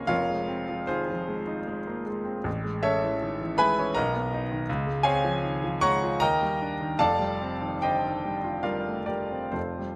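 Classical impressionist solo piano in a hazy, dreamy mood: this brief passage, cut from a longer piece, drifts in 3/4 with rubato between 61 and 85 BPM, as a clear, intimate grand piano tuned to A4 = 441 Hz moves from Fm7 through Amaj7, Cbmaj7, Dbmaj7 and Ebmaj7 to F9 across a range from F1 to Db6, captured up close with audible action noise and long sustain inside a moderate concert hall reverb.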